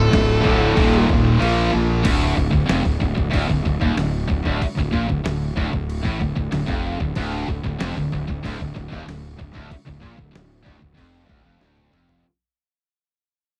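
Heavy metal at 94 BPM in a straight 4/4, this epic, heavy passage in D phrygian is cut from a longer piece and sits in a dry, close studio sound with a 1970s character. A nasal lead guitar with a parked wah, overdriven and fed through tape echo, sings a brief melody on A4 for the first second over chords moving from Dm through Eb5 to Bb5. Beneath it, a bright, picked guitar up front churns out the riff alongside a compressed one tucked in the background, while a double-tracked high-gain guitar plays with them until 2.0 s and returns at 7.2 s, reaching up to F4. A growly fuzz bass, fingered and up front, anchors the low end, and a gritty, pitched-down sampler-style kit with a thumpy kick and medium-tuned snare drives the groove, its kick and snare dropping out from 1.4 s to 2.1 s. From 2.1 s the music settles back on Dm and begins a long fade-out, closing with a drum fill over the final moments.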